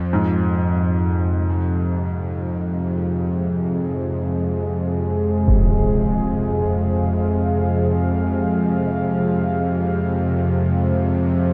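Dark ambient drone in free time and F minor, unsettling and desolate, where a tense, string-like bowed drone with vibrato sounds from the start, a worn, brilliant baby grand piano plays low arpeggios through tape echo from 0.1 seconds, a deep, moody pad of sustained chords with chorus enters at 3.0 seconds, and a huge, filtered impact strikes at 5.5 seconds, all within a vast cathedral reverb in this excerpt from a longer piece.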